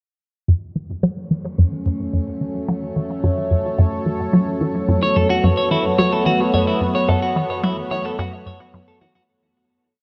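A sweeping, resonant synth pad fades in at 0.5 seconds alongside a juicy, squelchy blip pluck, opening this short, complete piece of ambient, sequencer-driven space music with an expansive, hypnotic mood. The pad holds slowly shifting chords in a single minor harmony; its detuned sawtooth and wave-folded tones evolve through a filter swell, with chorus, phaser and a shimmering reverb. Down low, the pluck repeats a six-step loop that drifts against the bar, its fast attack and short decay shaped by a moving notch and a filter sweep, then carried by phaser and tape echo. At 5.0 seconds a clean, twangy electric guitar joins with bright picked arpeggios, a seven-step loop of its own that drifts on a different cycle through tape echo and shimmer reverb. All three parts sit up front inside a huge, wet ambient space with a long reverb tail, and the whole piece fades out from 6.4 seconds.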